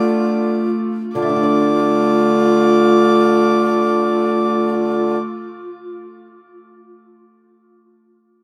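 In free time, slowing over the first 1.1 seconds, this brief renaissance-style consort dance in D minor unfolds with a rustic, solemn mood inside a vast, echoing cathedral space. A rich, gut-strung violin carries the melody with light vibrato, while an airy wooden tenor recorder with a chiff adds an expressive second line, and a smooth-topped viola and an up-front, vintage-toned bassoon fill out the accompaniment and bass. A delicate, fingerpicked lute with double strings sits in the background and rings on alone after the others stop at 5.2 seconds, continuing until 6.0 seconds within the long reverberant space.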